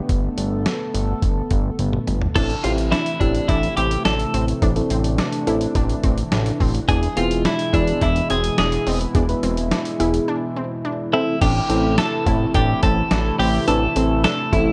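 Synth-pop at 106 BPM in A minor, nocturnal and melancholic, this excerpt opens on a shimmering, chorused pulse-width pad holding sustained chords over a fat, detuned analog bass and a gritty, compressed sampler-style drum kit with a thumpy kick, then at 2.4 s a clean twelve-string electric guitar carries the melody with slapback echo, joined by a warbling vintage FM electric piano and a bright unison pluck playing arpeggios in the background, all set in a dark production with light reverb and digital ambience and a break at 10.3 s.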